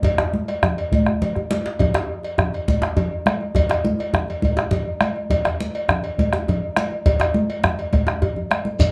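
A round, up-front bombo, bright thin-skinned congas, a cracking djembe and a distant metallic cowbell open this driving, powerful West African traditional drum ensemble excerpt in 12/8, with drum fills at 1.1 and 8.1 seconds, a grainy shekere slipping in only at 8.8 seconds, and a small, wet room ambience around the playing.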